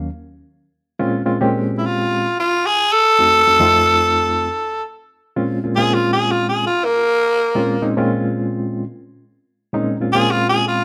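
A barky, reedy electric piano with light overdrive and fast tremolo opens this mournful, soulful blues fragment at 110 BPM in Bb dorian, moving through Ebm9, Bbm9 and F7b9 chords before a raspy, gritty tenor saxophone with vibrato enters up front at 1.8 seconds and takes a punchy, pop-style solo from 5.4 seconds, the band playing live in a stone room with moderate reverb.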